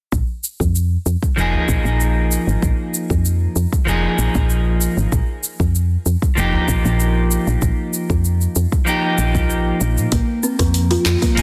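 Earthy and warm, this organic downtempo piece rides a round, mellow FM bass with sidechain pumping and a deep, layered electronic kick beneath a produced deep house kit of handclaps, dark hi-hat and shaker, while a clean, picked electric guitar with subtle chorus, delay and pumping enters at 1.4 seconds, a very quiet, saturated udu joins at 1.5 seconds, and an up-front, ringing, hollow kalimba plays delayed arpeggios from 10.1 seconds, set in light reverb with a dense, heavily limited master.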